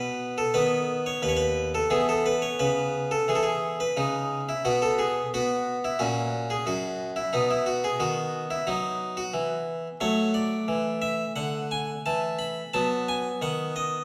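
A bright, plucked harpsichord sits up front in a reverberant recital hall, its single set of strings ringing through the church-like space. This brief cut from a longer baroque-style suite movement is radiant and flowing, with the French-style instrument playing alone in an elastic, rubato 4/4 from the low bass up into the treble.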